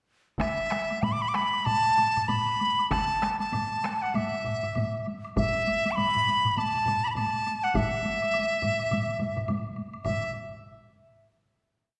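A wet, reverberant stage sound frames this short, driving and powerful Japanese traditional taiko ensemble piece in swung 4/4, speeding up from 95 to 111 BPM, where an up-front, bright, reedy bamboo dizi with a buzzing membrane and airy vibrato plays an ornamented modal melody in E suspended pentatonic over four taiko ensembles, two close with repeating patterns on hard and heavy sticks and two in the background with heavy-stick phrases, one dry and one in a small room, plus a woody background woodblock pattern, all entering at 0.4 seconds before a final note rings from 10.1 seconds.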